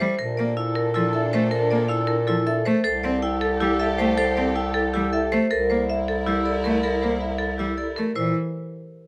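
A hard-mallet marimba carries the melody through this hypnotic, bright stretch of minimalist classical pattern music, its percussive, boxy tone sitting in a small room. The pulse runs at 316 BPM in eighths over a straight 7/8, moving through Bbmaj7, Am7/C and C7. Around it, a metallic, ringing vibraphone with fast motor vibrato spins arpeggios, a single close cello plays smooth, even bowed accompaniment, and a solo bass clarinet holds the bass, present and up front. A focused chamber string section sustains rich, bowed chords lower in the mix from 0.2 to 7.9 seconds, all under light reverb in this excerpt from a longer piece.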